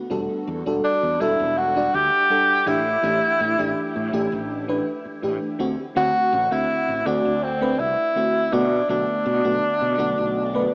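A mellow, distant tenor saxophone carries the melody from 0.8 seconds with vibrato and tape echo over a lush, warbling FM electric piano with a soft pad layer and a bright fretless bass, drifting through Em11, A7sus4, D7 and Bm7 at 82 BPM in E minor in a woozy, nostalgic vaporwave excerpt bathed in huge ambient reverb and cassette-tape, small-speaker sound.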